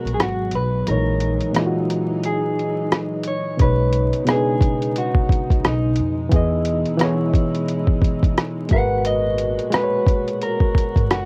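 A home cassette recording in a small booth, dusted with vinyl crackle, frames this dreamy, mellow lo-fi hip hop fragment at 88 BPM in B major, swung on the sixteenths and cut from a longer piece, with a break across its first 3.6 seconds. Up front, a reedy, lightly overdriven electric piano plays through its built-in speakers, and a dark, slightly broken-up picked guitar carries the melody from a small old amp. At 0.1 seconds a thumpy, muffled, pitched-down sampler kit of kick, hi-hat and rim click enters together with a woody pizzicato upright bass with steel strings, while a bowed string ensemble holds soft-attack sul tasto chords with light vibrato, moving from G#m9 through B69 and Emaj7.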